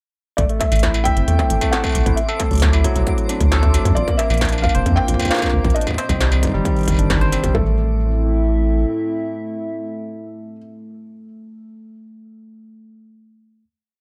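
IDM piece at 134 BPM in 4/4 with a straight feel, eerie and melancholic, built on a short progression of Am, Dadd9, Bbadd9 and Cmadd9 before settling on a final Am chord at 7.5 seconds. A felt-muted upright piano, soft and intimate with thick felt, carries a free melody through tape echo, while a barky tine electric piano, bright and clean through a combo amp, runs an 11-step arpeggiated loop that drifts against the bar and rings on to 13.6 seconds. Beneath them, a rubbery square bass sits up front with a hollow, bouncy syncopated riff. The drums pair a distorted, tape-warm electronic kick in a broken pattern with an industrial kit of clanging snare, smooth closed hats, woodblock, low conga and struck metal in a glitched, ever-changing beat, both in a small room ambience. A twinkling granular texture holds a high shimmering note in the background, and from 4.0 seconds a warbly, detuned tape-like pad adds nostalgic, lo-fi sustained chords with chorus that carry the closing chord.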